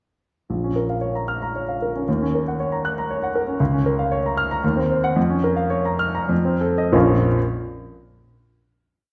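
In a rubato three-four lilt, this complete romantic character piece for solo piano unfolds in a brooding, stormy mood, its sweeping arpeggios spanning deep bass to high treble. The grand piano sounds intimate, natural and up front, with audible action noise, set in the wet reverb of a recital hall. The pulse slows from 2.8 seconds until a final chord arrives at 6.9 seconds, and the piano sounds until 7.4 seconds.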